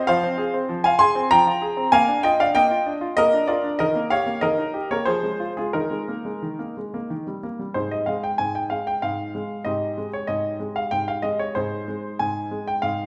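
A solo concert grand piano opens this fragment of a classical-period sonatina in A-flat major, its clear, slightly worn, natural tone placed up front with a deep bass and short sustain. At 95 BPM in a rubato 3/4, the elegant, playful music moves through F minor, B-flat and E-flat chords before a new passage at 7.8 seconds settles on A-flat. A wet recital hall reverb surrounds the piano throughout.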